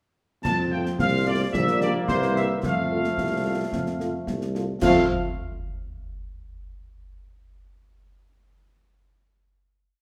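A large studio reverb gives this short, complete military-style march for wind band a roomy, resonant sound, and it moves proud and festive at 110 BPM in 2/4 in F major. A trumpet section carries the melody up front with a light vibrato, while a distant trombone section holds sustained chords beneath it. A vintage-toned tuba plays the bass on the beats with its own vibrato, and a mellow French horn section joins at 0.7 s with after-beat and sustained chords in the background. Concert snare drum, clash cymbals and concert bass drum sound close and acoustic, with a marching snare over a bass drum on the beat and dark cymbals. The harmony moves from F through Gm/Bb and C7 back to F, and the band settles on a final chord at 4.8 s.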